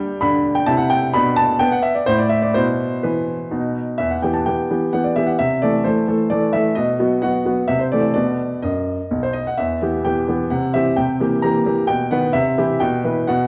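In a brisk 3/4 at 129 BPM with a straight feel, this dramatic, elegant classical-period piano sonatina excerpt in E minor features a bright, brilliant grand piano with short sustain, up front and open, spanning B1 to B5 alone through its 13.5 seconds, heard through a moderate recital hall reverb and worn, warbly cassette tape with drifting pitch, as the harmony moves from an opening G5 to Em at 4.0 seconds and settles on Em/B at 12.8 seconds.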